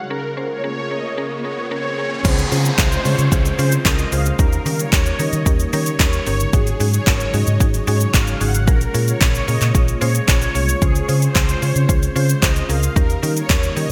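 Upbeat and carefree, this dance-pop excerpt in Db major moves at 112 BPM in a straight 4/4, with a bright 1980s-style digital sheen and light reverb. It opens with a riser building under a woody, mellow FM synth pluck, a soft, breathy pad sitting dark in the background, and a lush supersaw pad carrying the melody through a phaser, all three breathing with sidechain pumping behind a low-pass filter. At 2.2 seconds the drop arrives as an up-front deep house kit with a deep kick, dark hats, claps, shaker and crash kicks in under gated reverb, joined by a round, punchy, foam-muted electric bass that pumps along with the groove. A distant, hollow group handclap sits very quietly in a large-room space, while the riser and downlifter effects finish by 6.5 seconds. The harmony cycles through Dbmaj7, Eb7, Ab7sus4 and Bbm7 before returning to Dbmaj7 and Eb7, keeping the mood light and open as the passage is cut from a longer piece.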